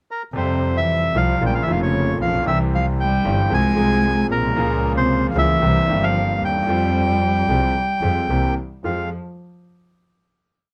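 A reedy, up-front bandoneon carries a motif-based melody over a bright concert grand piano and a biting, bowed double bass, both pulsing in the uneven three-and-two eighth tango rhythm, while a warm, expressive cello with portamento adds a second line in octave doubling, giving this short, tense and dramatic rubato tango in F harmonic minor at 113 BPM, set in light reverb, its full sweep from a pickup bar to a final Fmadd9 chord at 8.8 seconds.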